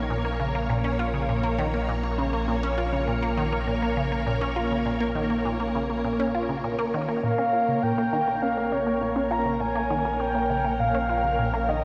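Swathed in huge ambient reverb and the warbling pitch drift of worn cassette tape, this mysterious, expansive stretch of sequencer-driven space music sets a squelchy, resonant blip pluck riff, treated with phaser and analog delay, over lush sustained string-machine chords with ensemble chorus and a round, deep analog bass on a single Bbm chord, and at 7.2 s a breathy, flute-like synth lead with subtle chorus, vibrato and analog delay joins them to take up the melody.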